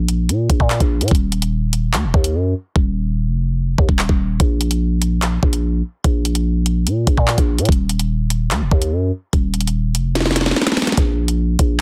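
A growling, buzzy 808-style bass sits up front in this dark, tense drill excerpt, its sine-based tone hitting with a fast attack and then decaying across a range from Eb1 to Bb2. Beside it, an electronic, produced, tape-warm drum kit delivers a knocking kick, a sharp snare, handclaps and warm hi-hats, also placed up front in the mix. The tempo is 146 BPM in 4/4 with a half-time feel, and the tuning sits at A4 = 441 Hz. The hi-hats drop out between 2.8 and 4.4 seconds, and a drum fill arrives from 10.2 to 11.0 seconds near the close of the clip. The sound is dry, with little reverb, and the dense, heavily limited modern master keeps both parts pressed close and forceful.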